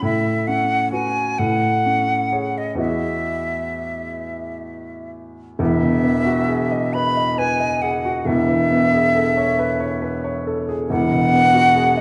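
An impressionist classical duo for flute and grand piano, this short passage cut from a longer piece floats in 6/8 at a slow 41-47 BPM in dotted quarters, its rubato pulse giving it a dreamy, luminous mood in E major. The silver concert flute carries the melody from start to finish in its upper register, airy and metallic, with soft attacks, gentle vibrato and lifted highs that make its expressive line shine up front. The baby grand piano accompanies throughout, spanning deep bass to the middle of the keyboard with an open, warm tone and long sustain. The harmony drifts through rich, colorful chords such as Amaj7 and Emaj9, and the music shifts into a new section at 5.6 seconds before settling on an Eadd9 at 10.9 seconds. A recital hall reverb with a 1.4-second decay surrounds both players in a dark, warm production.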